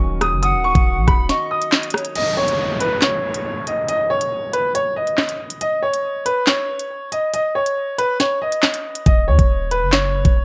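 Dark, ominous half-time drill hip hop in which a clear, open concert grand piano carries the melody with cassette tape grit and tape echo, joined briefly by a soft felt-muted upright piano with audible action noise and a distant, airy bamboo pan flute, over a knocking, up-front drill kit of kick, sharp snare, crisp hi-hats, handclaps, rim clicks and crash, while a deep sine 808 bass drops out at 1.3 seconds, an electronic downlifter sweeps through the early part of the break, and the bass returns at 9.1 seconds in this light-reverb home-cassette excerpt.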